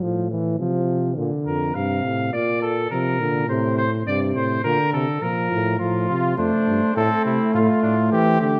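A moderate recital-hall reverb surrounds this brass ensemble, giving the short passage, cut from a longer piece, a natural, resonant space. It is an elegant, stately classical canzona in imitative style, moving at 104 BPM in a straight 4/4. A dark trombone with a light vibrato carries the accompaniment up front from the opening, joined by a mellow, smooth-topped bass trombone that anchors the low end. A punchy trumpet takes up the second line at 1.5 seconds, and a cornet enters with the melody at 6.1 seconds, its tone mellow with a light vibrato. The harmony moves from F over A through Bb and a Gsus24 back to Bb before settling on F.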